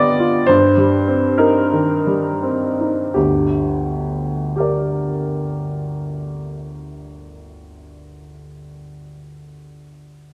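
Rubato in 2/4 at a slow 40-55 BPM, this stormy, bittersweet romantic character piece in G minor opens by slowing down over its first 3.1 seconds, settling from Cm/G onto Gm as a new section begins at 3.1 seconds. A solo upright piano carries it all, woody, slightly detuned and up front, ranging from G1 to G5 through a short fragment of a longer work. A wet recital-hall reverb and dark production frame the instrument.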